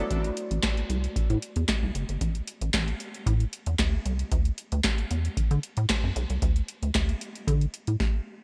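A rubbery square-wave bass anchors this short cut from a longer early-eighties boogie funk piece, its hollow, bouncy tone shaped by wave-folding, a resonant filter pluck and a moving notch, with a fast attack and sustained, dark notes sitting up front. Beside it, a booming analog drum machine supplies a deep kick, crisp snare, metallic hi-hats and handclaps, all pushed through overdrive and placed up front, with a short room around the snare, claps and hats. The groove moves at 114 BPM in a straight 4/4 in A dorian, giving a late-night, funky mood. Light reverb and a digital ambience frame the pair. The bass plays until 8.0 seconds and the drums until 8.2 seconds, inside a stop that runs from 8.0 to 8.4 seconds.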